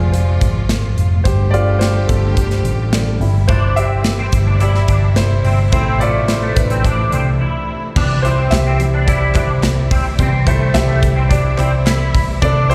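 Piano-driven pop in C major at 108 BPM, hopeful and warm, cut from a longer piece, where a grand piano with short sustain and slapback echo leads from the start over lush, bowed symphonic strings with vibrato, a dark, round hollow-body electric bass sitting up front, and a punchy, polished studio drum kit with crash, hi-hat and a medium-tuned snare. A bright, twangy clean electric guitar riff enters at 3.5 s with ensemble chorus and slapback echo, and after a brief break near 7.4 s the music settles on a C chord at 8.0 s, with a very quiet, crisp group handclap joining at 8.5 s and continuing until 12.0 s. The whole sounds like a live gig heard through a venue's PA, carrying small room and recital hall reverb.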